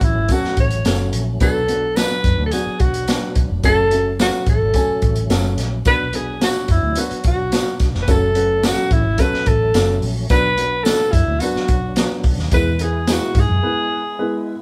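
A breathy, subtoned alto saxophone leads from the start in this driving, passionate slice of 1960s-style soul, its scooped, jazz-inflected melody sitting up front over a worn, woody upright piano with audible action noise and a very quiet, lightly overdriven tonewheel organ turning through a slow rotary speaker. A gritty, saturated breakbeat kit with a tight kick and rolled-off top drives the groove alongside a round, foam-muted fingered electric bass, while a jingly tambourine enters in the background at 0.3 seconds. The band plays live in one room with light reverb, and the drums and bass drop out near 13.6 seconds, leaving saxophone, piano and organ over the closing E chord.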